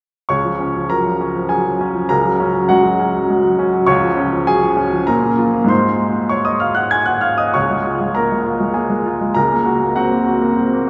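Bathed in a long, wet cathedral reverb and heard from further back in the room, this brilliant, sparkling excerpt of a classical virtuoso piano study in a rubato 3/4 features a clear, polished baby grand playing solo across a broad span of the keyboard from 0.3 to 10.9 seconds.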